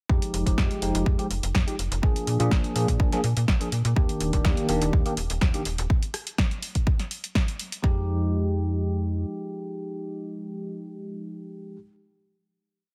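A straight four-on-the-floor kick, up front and tape-warm, drives this short, nostalgic and sensual filtered disco house piece, joined by a punchy analog drum machine playing programmed closed and half-open hi-hats, rim clicks and a snare backbeat, with the hats pumping to the sidechain. A snappy, metallic FM bass with octave-jumping lines and a bell-like tine electric piano playing dotted-rhythm drop-2 chords both pump and sit under a low-pass filter, the piano also carrying a phaser, while a filter sweep runs through the groove over a minor-ninth, dominant-seventh and major-seventh progression with a brief break in the chords. The drums drop out at 7.9 seconds and the bass at 9.2 seconds, leaving the clean, dry electric piano to ring out the final chord until 11.8 seconds.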